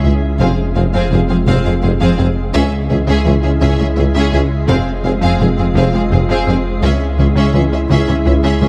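Closely miked with light reverb, this brief cut from a longer cinematic score blends orchestra and electronics into a relentless, vast mood. It moves slowly at 56 BPM in a straight 6/8 in F harmonic minor, alternating between Fm and Dbm. Up front, a deep, rumbling detuned saw bass with saturated beating anchors the low end. Beneath it sit background cellos with a soft attack, woody double basses and a clear, vintage-toned solo tuba. Violins carry a smooth melody with light vibrato over a lush second violin line, while violas add expressive accompaniment with portamento. Tight French horns and a glassy, ethereal FM pad with ensemble chorus and its own reverb hold sustained chords in the background, and a very quiet, round analog pluck with a filter sweep and chorus plays arpeggios throughout.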